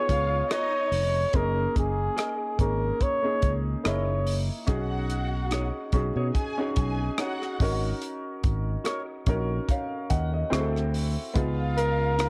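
A tight funk drum kit with dry kick, hi-hat and rim click sets a slow 72 BPM groove in 4/4 with a light sixteenth-note swing, joined by a punchy, up-front fingered electric bass, in this short, lush and romantic 1970s-style soul excerpt in F# major. A worn concert grand piano with deep bass carries the chords while dark, bowed symphonic strings with vibrato and a soft attack add a smooth second line, and a clean, compressed electric guitar enters at 0.5 seconds with a dark fingered riff. A breathy flugelhorn with light vibrato and scooped notes sings the jazz-style melody up front until 4.5 seconds, returning briefly at 11.8 seconds. Every part except the bass carries a cassette tape color, and the whole is a cassette home recording in a small, lightly reverberant room.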